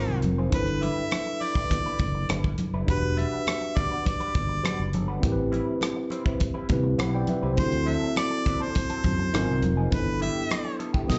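Smooth and silky, this lush 1970s-style soul excerpt sets a clear harmonica melody with light vibrato over a worn, slightly out-of-tune tine electric piano, both touched with slapback echo. A dark, slightly broken-up electric guitar riff runs through wah and slapback echo, while a fingered electric bass and a tight, dry funk kit with a high-tuned snare sit up front, and thick-skinned, damped congas with their own slapback echo stay in the background. It sounds like a live gig heard through a venue's PA, with club reverb, small-room ambience and a dulled top end.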